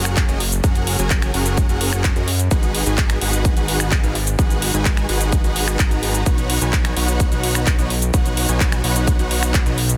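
Festival progressive house at 128 BPM, uplifting and euphoric, with a huge, airy detuned supersaw riff pumping to the sidechain and trailing dub echo over a fat analog sawtooth bass that also pumps, a punchy, up-front electronic kick, and a big-room kit of finger snaps, handclaps, metallic hi-hats, shaker and a soft-clipped snare, moving through F#add9, G#m7 and Badd9 in a dense, heavily limited mix with digital ambience.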